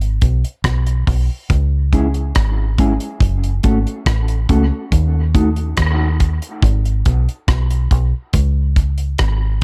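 A deep, round fingered electric bass sits up front in this dub reggae excerpt, its dark, foam-muted tone punchy and direct as it moves low in the register at a slow 70 BPM in straight 4/4. Beside it, a dry, damped 70s drum kit with a tight kick, hi-hat and rim click keeps a mid-forward, close presence. The piece opens on a break lasting until 1.5 seconds before settling into a C# minor progression of G#m, C#m, F#m and a sparse D# shape, returning to G#m and closing on C#5. A mellow, clean electric guitar, played with the fingers, enters at 1.9 seconds and drops out by 5.5 seconds, sitting quieter in the mix with a high-pass filter and a dub echo trailing behind it. A small room reverb and an echo-heavy mix give the cut a deep, spacious mood.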